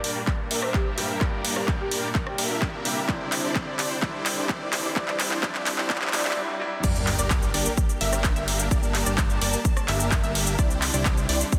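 This anthemic, euphoric slice of festival progressive house opens on a build-up, with a huge, detuned supersaw chord riff carrying analog chorus, cassette-tape colour, a low-pass filter, delay and sidechain pumping. Around it sit a breathy, flute-like synth lead with a soft attack, vibrato and delay, a bright baby grand piano with audible action noise and pumping delay, and a sul tasto string section holding pumping sustained chords, all placed in the background. An overdriven, up-front house kit plays a fill with crash, handclaps, hi-hat, rim click and shaker, joined at 0.3 seconds by a punchy, overdriven electronic kick, while a very quiet riser and sub drop enters at 2.8 seconds. At the drop at 6.8 seconds, a fat, thick analog bass with an evolving filter sweep and sidechain pumping arrives alongside a lush, detuned unison pluck playing arpeggios with delay in the background. The chords move between G minor and C add nine under a lush hall reverb, and the master is dense and heavily limited.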